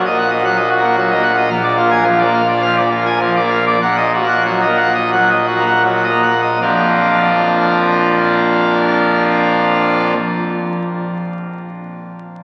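In a straight 4/4 that slows between 0.4 and 6.6 seconds within a 75-113 BPM range, this stormy, majestic fragment of a classical organ toccata features a solo pipe organ on full registration, brilliant with mixtures and baroque voicing and placed up front with audible chiff, spanning Bb1 to Ab5 over Ebm/Bb, Bb7 and Ebm/Bb before landing on Bb at 6.6 seconds and falling silent at 10.1 seconds, all steeped in a long cathedral reverb and the crackle of a very old 78 rpm record.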